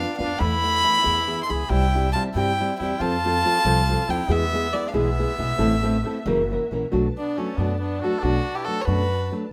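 In a loose, rubato 6/8 lilt, this passionate, dramatic mariachi fragment puts a close, reedy solo violin with a nasal gut-string edge up front on the melody, while a clear trumpet with light vibrato carries a second line, a full-bodied fingerpicked nylon-string guitar with audible finger squeak supplies the accompaniment and a woody, thumpy pizzicato upright bass holds the low end, and a very quiet, veiled con sordino violin section holds lush sustained chords beneath, all in a moderate studio room as the harmony moves through E, C and F toward F#7 and then Bm7 at 6.9 seconds.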